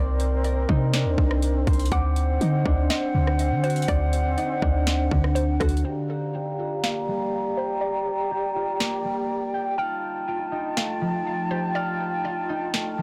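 Atmospheric cloud-rap with an ethereal, melancholic mood, this excerpt from a longer piece moves in a half-time feel over jazzy minor chords. A mellow small flute group holds sustained chords up front, its pure tone carrying vibrato and a pumping motion, while a concert harp rings out arpeggios with a mellow, thumb-plucked acoustic sound. A clean 808-style bass adds deep, boomy sine weight until about 5.8 seconds. Behind these, a hollow square pluck sits in the background with a melody, its detuned, bouncy tone thickened by chorus and echoing delay. The overdriven trap kit stays close, with a hard-clipped kick, sharp snare, rim clicks and metallic hats. From 5.9 seconds a filter sweep reshapes the sound, the kick drops out at 11.8 seconds, and the whole recording has a dry, blown-out, distorted character.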